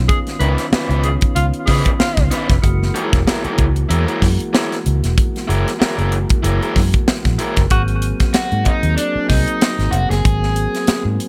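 A swung sixteenth-note funk groove at 94 BPM in 4/4 drives this energetic clip from a longer piece, set in Ab mixolydian with chords moving from Db9 to Gb9 and then Ab9. A crisp fusion drum kit sits up front with a high-tuned snare, punchy kick and hi-hat, while a vintage muted fingered electric bass adds a dark, round, foam-muted low end. A percussive tonewheel organ holds mellow sustained chords through a fast rotary speaker with light overdrive and chorus vibrato, and a raw garage guitar picks an overdriven, tube-saturated accompaniment. A breathy tenor saxophone plays a whispered, intimate second line with scooped notes and analog delay from 0.1 to 2.2 seconds, returning briefly at 7.7 seconds. At that same point an overdriven electric guitar solo begins over the rest of the band, running through the closing section in a small room with light reverb.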